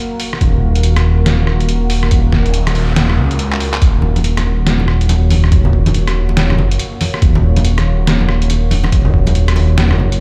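Deep dubstep in Eb minor at 141 BPM with a half-time, swung feel, cavernous and brooding, heard as a short cut from a longer piece played back through a big sound system in a bare stone room. A moody, warbling pad of detuned saws with chorus holds a sustained Eb minor chord from the start. A pitched-down, compressed trip hop kit with handclaps, hi-hat, rim click and a medium-tuned snare enters at 0.2 seconds, joined at 0.4 seconds by an up-front, rumbling, beating saw bass and a thumpy, muffled, overdriven kick that stops at 9.2 seconds. A faint noise sweep leads into a drum fill at 3.5 seconds, and low-tuned, ringing congas played with soft hands sit in the background from 4.0 seconds.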